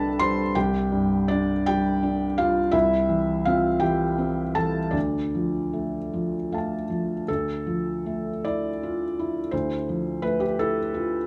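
Neoclassical minimalist piano in a wistful, melancholic vein, unfolding in a slow, rubato 6/8 over this short passage cut from a longer piece. A single felt-muted upright piano carries everything from 0.0 to 11.3 seconds, spanning the range from C2 to C6. Its tone is soft and dark, with thick felt dulling each note, and the mechanical action noise stays audible, placing the instrument up front and intimate. The harmony moves from Csus2 through Am/C to Dm, then settles on Dmadd9 as a second section begins at 7.3 seconds. A moderate large-studio reverb lends the close, muffled piano a gentle sense of space around it.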